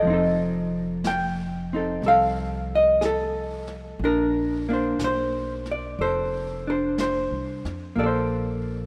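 Romantic and intimate, this slow jazz ballad in Bb major moves at 60 BPM with a gentle swing, drifting from F7 to Bbmaj9 in a short cut from a longer piece. A dark, clean hollow-body electric guitar sits up front, its picked part carrying the accompaniment, while a woody pizzicato upright bass plays softer beneath it. A distant, roomy brush kit with a rolled-off top whispers on snare and hi-hat, and the whole rough home-demo mix is bathed in a moderate, lush hall reverb.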